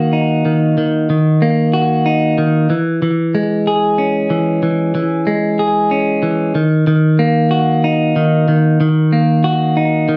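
Rock in a straight 3/4 with a euphoric, hopeful mood, this brief cut from a longer piece features a lone clean electric guitar playing solo from 0.0 to 10.2 seconds. Its picked tone is bright and twangy, compressed and up front, with a slapback echo, set in a wet studio reverb. The chords move from D#m to C#m/E and back to D#m at 6.6 seconds.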